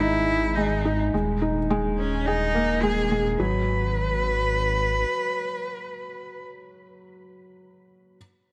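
Over a straight 4/4 pulse, this short cut from a longer piano and strings electronica piece opens in a hypnotic, intimate drop that runs to 3.4 seconds, moving from Emaj7/G# through D#sus4 to G#m7. A soft, felt-muted upright piano with audible action noise repeats a mellow riff up front, while a single bowed cello with focused vibrato carries the melody through a tape echo. A deep, rumbling detuned saw bass beats darkly underneath until 5.1 seconds, all set in a moderate echo chamber reverb.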